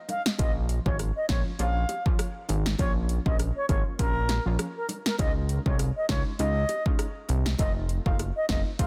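An overdriven deep house drum kit sits up front in this tough, hypnotic dancehall excerpt, its deep kick, punchy snare, metallic hats and rim click swung lightly on the sixteenths, with very quiet, high-tuned bongos tucked beneath. A fat, detuned sawtooth bass, also up front, and chorused brass stabs with a filter pluck enter at 0.4 seconds, moving through Bbm, Dbadd9 and F7. Meanwhile a distant, reedy baroque flute carries the melody through a delay, all in a digital ambience with a dense, heavily limited master.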